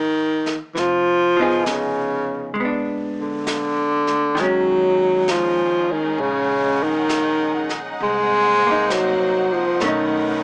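A breathy, whispered baritone saxophone sings an intimate, melancholic jazz ballad melody up front at a slow, swung 66 BPM, over dark, clean picked hollow-body electric guitar chords and a woody pizzicato upright bass in the background, with a brushed drum kit joining at 0.5 s and a lush bowed string section adding sustained, vibrato-rich chords from 4.4 s, moving through Db69, Fm7b5, Bb7b9 and Ebm7, all in light reverb with a small-speaker sound.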